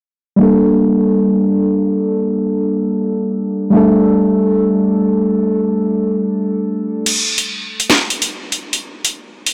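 A blown-out, overdriven recording sits inside a huge ambient reverb, lending this drill cut from a longer piece a menacing, tense air at 144 BPM in a half-time 4/4 feel, in G minor. Muted, felt-like synth keys open at 0.4 seconds, soft and intimate with a dark, chorused tone and a fast attack that decays, blending triangle and sawtooth with a noise layer as a filter sweep moves through them. They carry the accompaniment in a narrow register around G3 to A4, moving from Gmadd9 to Dsus4 at 3.7 seconds. At 7.1 seconds the keys stop and the harmony drops out as an electronic drill kit takes over up front, with a sharp snare, metallic hi-hats, finger snaps and a crash cymbal while the kick stays muted. This closing stretch of drums runs to 9.5 seconds, leaving a raw, percussive edge.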